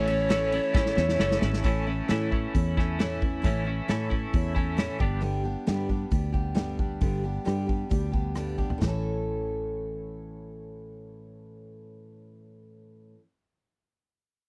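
A dark, overdriven lead guitar with tape echo flashes a brief phrase that stops at 1.4 seconds, opening this nostalgic, open-road folk and heartland rock excerpt in A major at 134 BPM, where a twangy, compressed twelve-string electric guitar with tremolo plays a riff until 5.2 seconds, a full-bodied dreadnought acoustic with fresh strings and finger squeak picks the accompaniment, a round, foam-muted fingered bass holds the low end, and a punchy, up-front country drum kit adds fills before dropping out at 8.9 seconds, all captured in a dry, close 1970s-style studio sound.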